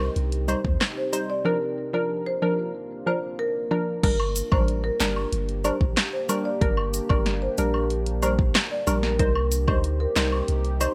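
Bouncy and hypnotic, this 93 BPM dancehall excerpt in G minor, cut from a longer piece, sets a detuned, filter-plucked wavetable chord stab and a moody sawtooth ambient pad, both pumping with sidechain, over a punchy pitch-drop sub bass, acoustic woodblock and cabasa, and a deep house drum kit with 12-bit sampler grit entering at 0.2 seconds, while a woody rosewood marimba with tape echo carries the melody from 0.5 seconds through a digital ambience carrying a faint mains hum.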